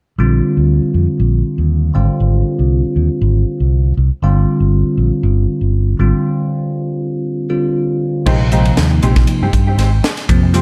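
Dark, lightly reverberant small-room production frames this slick, bright electric jazz fusion excerpt in Bb mixolydian at 119 BPM with a gentle sixteenth-note swing, where a bell-like tine electric piano with phaser and a growly, up-front fingered electric bass carry chords from Bb69 through Abmaj7 and G7sus4 into a break at 6.2 seconds, before a crisp fusion drum kit with a high-tuned snare and punchy kick joins compressed, chorused stabs from a mellow electric guitar at 8.3 seconds over a Bb13sus4.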